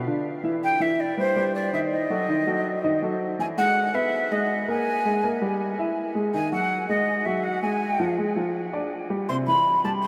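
A breathy, mellow flute carries the melody from 0.6 s, its metallic tone shaded with vibrato and tongued notes, sitting up front yet with a distant quality. Beneath it, a warm baby grand piano plays accompaniment from the opening moment, its natural sound also placed close to the listener. This sunny, sophisticated jazz excerpt moves at a brisk 163 BPM in 4/4 with a straight feel. The harmony opens on Cmaj7 and D#dim, then shifts at 3.4 s into a second passage that colours the tune with Emaj7, Gm, Fm69 and a rootless Am7. A huge, wet reverb with a 7.8-second tail surrounds the pair, setting them in a vast, echoing space.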